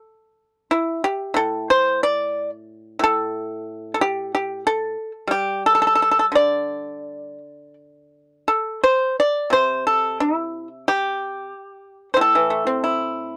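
Elegant and contemplative, this short passage of Chinese traditional music features a solo pipa in the A yu mode. The pace is rubato, moving loosely around 82 to 95 BPM within a 4/4 frame, so the music breathes freely. The pipa enters at 0.7 seconds and carries the whole passage alone until 13.4 seconds, ranging from A2 up to D5. Played with fingerpicks, the instrument has a percussive, acoustic attack and sits up front in the sound. The close, dry 1970s-style studio recording gets only a light touch of reverb, and the passage is cut from a longer piece.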